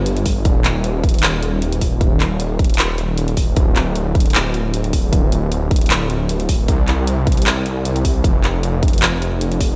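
A thick, detuned sawtooth bass opens this euphoric future bass passage, sitting up front between D1 and C2 with a saturated, lush chorus and sidechain pumping. The pop drum kit follows at 0.1 seconds with handclaps and bright hi-hats placed forward in a studio reverb, and a punchy, layered electronic kick joins at 0.3 seconds, its sound carrying the character of a small room. The groove runs at 154 BPM in 4/4 with a half-time feel and light 16th-note swing in Eb major, in a short clip cut from a longer piece set in a digital ambience.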